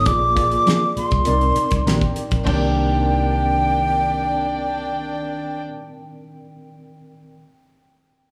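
Silky and bittersweet, this short excerpt of lush 1970s-style soul moves at 100 BPM in a straight 4/4, set in C minor and passing from a Bb7 to a Cm9. A breathy, hollow jazz flute carries the melody from the start, its soft attack and vibrato trailed by tape echo, while a worn, slightly out-of-tune tine electric piano plays accompaniment through its built-in speakers and adds a fill between 1.6 and 2.5 seconds. Underneath, a vintage muted fingered electric bass sounds round and punchy, and a damped 70s drum kit with a fat snare, tight kick and dark cymbals plays only briefly, ending at 2.6 seconds. A mellow, clean electric guitar riff enters at 0.7 seconds, and a chamber violin section joins at 2.5 seconds with an earthy, smooth-topped second line marked by light vibrato. Light reverb and studio ambience give the whole a small-room setting, with the electric piano lingering last until 7.4 seconds.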